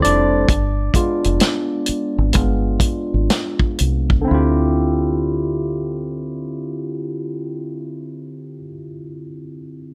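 R&B with a neo-soul lean, this introspective, late-night fragment is cut from a longer piece and sits in D minor at a slow 60-67 BPM in 4/4, with a swung sixteenth-note feel. A barky, bright tine electric piano carries the accompaniment up front, lightly overdriven through a combo amp and colored by a phaser. It takes a featured solo over the opening 4.3 seconds, where the tempo slows, and it moves from a G7b9 to a Dm11. A warm soul drum kit of kick, snare and hi-hat plays only through that first stretch, dry and mid-forward, with a punchy kick, a medium-tuned snare and a rolled-off top. Underneath, a deep dub fingered electric bass is dark, round and foam-muted, and it drops out at 8.7 seconds while the electric piano rings on to the end. Light reverb gives the sound a little air.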